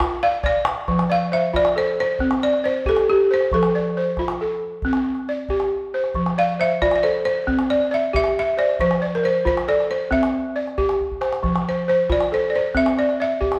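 A live band in one room is bathed in a lush, large studio reverb on this joyful, flowing fragment of West African traditional music, set in a straight 12/8 at 91 BPM in F major. One balafon plays buzzing, woody arpeggios struck with rubber mallets, while a second, darker and smoother balafon, played with hard rubber mallets, carries the melody up front from 0.2 seconds. A deep calabash supplies the percussion, a short drum fill arrives at 11.0 seconds, and the harmony sways between F and C after an opening Bb.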